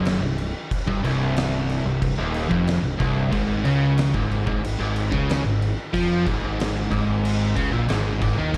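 A biting overdriven guitar, picked and double-tracked, plays a riff between C2 and F3 in this short, heavy stoner and doom metal excerpt at 92 BPM in a straight 4/4. Two fuzz guitars share that same riff range: one is compressed and very quiet, while a thicker, dark one with added distortion stays in the background. Underneath, a growling fingered electric bass, bright and overdriven with a punchy attack, plays between C1 and F2. An oversized low-tuned acoustic drum kit comes in at 0.1 seconds with crash cymbal, a punchy kick and a fat snare, its sound saturated and gritty within a bright stone room. The harmony moves from Cm to Ab5 at 3.3 seconds, and the light, small-room reverb and dark production give the passage a hypnotic, weighty mood.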